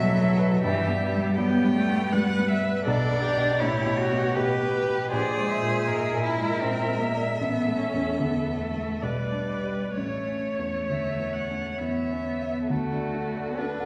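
Tender and warm, this slow romantic movement for piano quartet sways in an unhurried three-beat rubato. A distant solo violin carries the melody with vibrato, soft attacks and gliding portamento, while a rich, up-front cello sings a second line and a focused, smooth-topped viola fills in beneath. A present baby grand piano accompanies across a broad range, the harmony settling onto D at 12.7 s, all heard from further back in a recital hall's lingering reverb.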